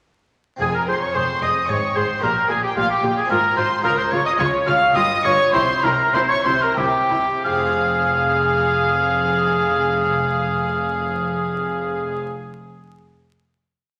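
In a straight triple metre, this stormy, dramatic baroque-style concerto movement opens with a ritornello that slows from 3.0 to 7.4 seconds before settling on a held final chord. A chamber violin section carries the gut-strung, lightly vibrato melody, doubled at the octave and in unison by a distant oboe, while a second, more remote violin section shadows the tune in sixths. Violas add repeated notes and sustained chords, a dark cello section and rich double basses anchor the bass, and a full-bodied harpsichord rolls its plucked chords until 12.5 seconds, all set in a wet scoring-stage reverb with a vinyl crackle.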